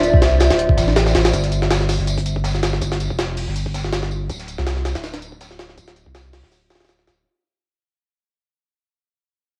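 A warbling, detuned tape-like pad holds a Dm9 chord until 1.3 s over a thick, saturated sub bass, while a gritty, pitched-up jungle sampler-style kit with a thumpy kick sits up front and a darker, smoother crunchy breakbeat kit lies behind it, driving this nostalgic, frenetic drum and bass and jungle cut at 162 BPM through light reverb and vinyl crackle until it fades out from 1.3 s.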